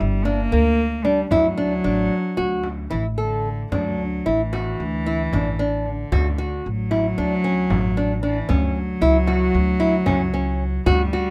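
Shimmering and restless, this contemporary chamber excerpt in an uneven 9/8 sets fingerpicked arpeggios on a small, up-front nylon-string guitar against a rich, reedy bowed cello line with a gut-string period tone and a woody, dark pizzicato upright bass, while a deep frame drum sounds distant in a large room behind them, all captured closely and dry as the harmony moves from Gm to D and reaches F#5 at 8.5 seconds.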